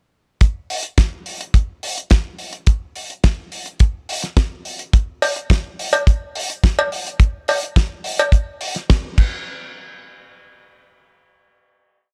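Sunny and feel-good, this short nu-disco piece runs at 106 BPM in a straight 4/4, with a tight, polished kick pounding four-on-the-floor up front from 0.4 seconds and a damped 70s drum kit laying down a disco backbeat of fat snare, closed and open hi-hat and dark crash cymbals under a rolled-off top. From 5.2 seconds a compressed, saturated cowbell joins up front alongside egg shaker and group handclaps, before a band accent at 8.9 seconds leads into a final hit at 9.5 seconds. The whole thing sits in a dry, gritty room with a cassette-tape character.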